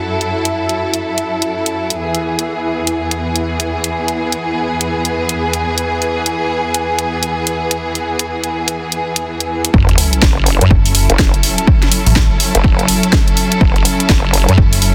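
Swung sixteenths push a bouncy, aggressive bass house groove in 4/4, driven at first by a garage drum kit whose overdriven hi-hat and cracking snare sit up front. Lush bowed strings hold sustained chords with smooth vibrato, pumping against the sidechain, while an ethereal, airy pad of detuned unison voices drifts above with slow attacks and chorus-thickened reverb. At 9.7 seconds the drop lands with an impact: a punchy, overdriven electronic kick arrives, a very quiet sub drop sounds beneath it, the pad falls away, and a nasal, resonant wobble bass enters with formant-filtered vowel sweeps, saturation and chorus. From 10.7 seconds a dark, metallic FM bass with quick, decaying notes and tube saturation joins the low end, also pumping with the sidechain. The dense, heavily limited master and light reverb keep this short cut from a longer track loud and forceful.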